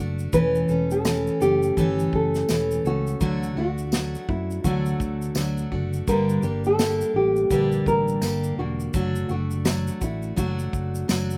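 A dark, thumb-plucked nylon-string guitar carries the melody up front with a slapback echo from 0.3 seconds. Beneath it sit a full-bodied, picked steel-string acoustic guitar with audible finger squeak and a punchy, amped fingered electric bass. This sunny, easy-going acoustic pop excerpt moves at 84 BPM in D major with a swung sixteenth feel. An airy unplugged drum kit played with bundle sticks (tight kick, shaker and snare) comes in at 0.2 seconds, and a jingly tambourine sits distant in the background from 1.0 seconds. The dry outdoor recording moves through A/E, D, Gm and D/F#, cut from a longer piece.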